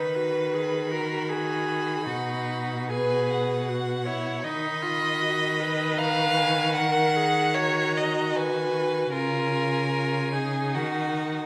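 Heard through a moderate recital-hall reverb, this brief passage from a slow, lyrical and serene romantic string quartet movement in B major sways at 77 BPM in a rubato 3/4, with a distant, smooth first violin singing the melody high above a focused second violin carried up front, a rich, even viola close by in accompaniment, and a clear cello anchoring the bass, every player bowing with vibrato as the harmony moves from B/D# through G#m7/D# and C# to D#m at 10.8 seconds.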